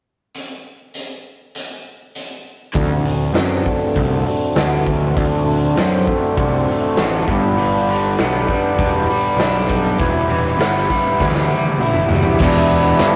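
Driving a straight 4/4 at 99 BPM, a gritty, up-front garage drum kit with a punchy kick opens this trippy, mysterious psychedelic rock excerpt alone until 2.7 seconds, when a double-tracked overdriven electric guitar riff enters, joined a moment later by reedy breathing harmonium chords and a dark, round fuzz bass over D7, G and Em under a filter sweep. A drum fill runs from 11.2 seconds, and a very quiet jingly tambourine arrives at 12.4 seconds, all inside a rough, tube-saturated rehearsal-room sound.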